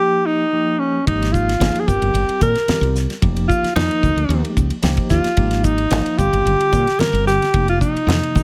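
Intense and nocturnal, this electric jazz fusion passage opens with an up-front alto saxophone, played with vibrato, subtone and scooped notes, over a clean tine electric piano colored by tremolo and phaser through a combo amp. At 1.1 seconds a round, woody fretless bass enters together with a dry, polished 70s drum kit, with its fat snare, tight kick, dark ride cymbal and hi-hat sitting forward, while bright, hard-handed congas stay in the background. Suspended and ninth chords give the harmony an unresolved glow, and a light studio reverb surrounds the mix.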